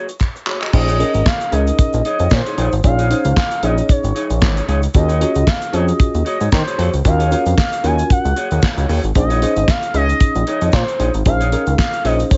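Set in a small room ambience with the top end rolled off, this slick, late-night early-eighties boogie funk excerpt opens on a dark, chorused electric guitar riff and a brief drum fill, and at 0.7 seconds a saturated, detuned sawtooth bass, a clean tine electric piano and a warbling portamento lead, with vibrato, chorus and slapback echo, join the dry, up-front drum kit with its gated reverb, fat snare and handclaps, and a grainy, very quiet tube shaker.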